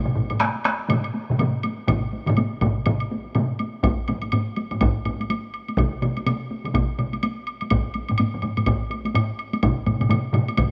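Powerful and driving, this short cut from a longer Japanese traditional taiko ensemble piece moves at 124 BPM in 4/4 with a swung sixteenth feel and speeds up throughout, as several layers of hard-stick taiko drums, some in a small room and others with a vintage, band-limited tone, start within the first moments, a close woody woodblock clicks alongside, and one more up-front taiko layer joins at 1.9 seconds, all set in light studio reverb.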